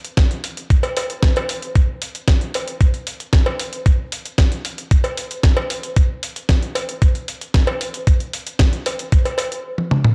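A groovy, feel-good nu-disco excerpt in straight 4/4, built entirely from percussion: a dusty soul sampler-style kit of hi-hat, fat snare and toms sits up front alongside a thumpy electronic kick that joins at 0.2 seconds, both compressed and re-recorded in a large room. A cowbell, heard with egg shaker and group handclap in an acoustic live-room setting, sits low in the mix from 0.8 seconds. The dry, gritty cassette-tape sound gives it a hardware grain, and a drum fill closes the passage at 9.8 seconds.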